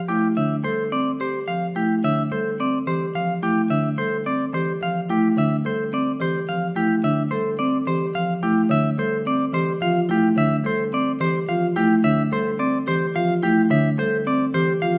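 From 0.1 s a clean, twangy electric guitar carries the melody up front over woody, rustic folk marimba accompaniment played with soft mallets and ringing, metallic vibraphone arpeggios struck with medium hard mallets, all resting on a single Dm11 chord in 3/4 in this meditative yet urgent minimalist classical excerpt, heard in a dark production within a reverberant recital hall.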